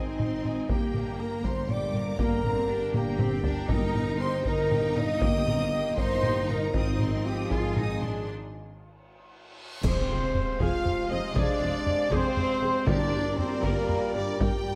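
Dramatic and heroic, this cinematic orchestral excerpt in 6/8 sets a clear, focused violin melody over a second violin line, lush bowed violas, rich cellos and woody double basses, while mellow, distant French horns and very quiet trombones hold sustained chords and dark trumpets add stabs in the background. Close, dry taiko drums struck with heavy sticks drive the piece from the start, joined by hard-mallet timpani, a cymbal swell with clash cymbals and concert bass drum from 6.7 s, and a huge reverse cymbal and impact at 9.5 s. A pure, straight-toned concert flute enters at 9.8 s as a faint second line, and the ensemble sits in a moderate scoring-stage reverb.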